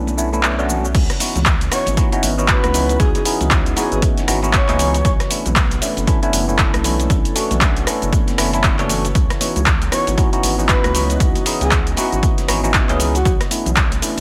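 A swung 4/4 groove at 117 BPM drives this smooth, deep house excerpt in C# minor, with an overdriven, punchy electronic kick landing at 0.9 s alongside a quiet, gritty sampler-style kit of hi-hat and snare that carries a tape-warm, roomy character. Out front, an overdriven electronic kit supplies crash, handclaps, hi-hat, rim click and shaker, while very quiet, high-tuned acoustic congas ring underneath from the first moments. A rubbery, hollow square bass and bell-like tine electric piano stabs both pump against the sidechain, the piano adding phaser and digital delay over chords that move between Bm11 and C#m11. A dark, very quiet ambient pad holds sustained chords with a slow attack and long release beneath it all. A breathy, flute-like synth lead with chorus, vibrato and delay carries the melody in two phrases, from 1.7 to 5.1 s and again from 9.9 to 13.3 s, in a dry, close mix.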